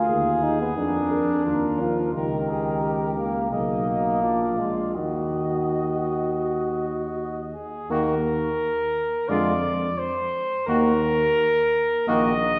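Classical brass quintet music, solemn and grave in a free rubato 4/4, where a mellow, punchy trumpet carries the melody up front over a clear flugelhorn second line with light vibrato, a clear French horn and distant, roomy trombone in accompaniment, and a dark, smooth-topped bass trombone beneath, all five heard from further back in a concert hall with a wet reverb in this brief fragment cut from a longer piece.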